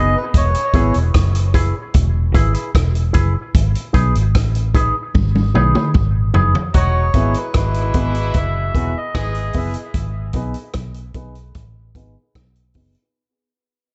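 Hazy and laid-back, this dub reggae excerpt in E major moves at 75 BPM over a straight 4/4, with a round, foam-muted vintage bass and an up-front vintage drum kit of punchy kick, hi-hat, rim click and toms carrying it from start to finish in a dark production with light small-room reverb. A twangy, compressed electric guitar through an envelope filter holds the accompaniment until 6.6 seconds, and a drum fill at 5.1 seconds leads into a break where the reedy, breathy melodica returns with the melody, a tight horn section with light vibrato and octave doubling adds a second line, and a woody upright piano plays stabs. The melodica, guitar and piano all sit under a low-pass filter and dub echo, the horns carry dub echo too, and from 6.7 seconds a filter sweep runs as the piece fades out.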